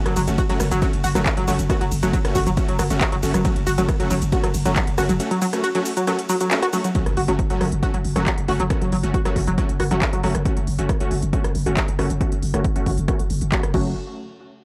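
Industrial and driving, this short cut of peak-time techno sits on a straight 4/4 pulse and holds a single F# minor chord throughout. A punchy, overdriven analog kick leads the mix from 0.4 seconds, joined by a layered drum kit of smooth hats, handclaps, rim clicks, shaker, ride and crash, its tape-toned kit re-recorded in a small room. Underneath, a growling, buzzy 808-style bass with a fast, decaying attack is saturated, filtered and pumped by the sidechain. A tight, nasal sequenced synth riff, detuned and chorused, sits up front until 10.3 seconds and returns briefly at the very end. Meanwhile a detuned supersaw stab with an airy noise layer fires through tape echo, with a filter sweep across the second half. A barely audible impact lands at 7.1 seconds, and the whole track carries a dry, gritty hardware sound with transformer saturation and light reverb.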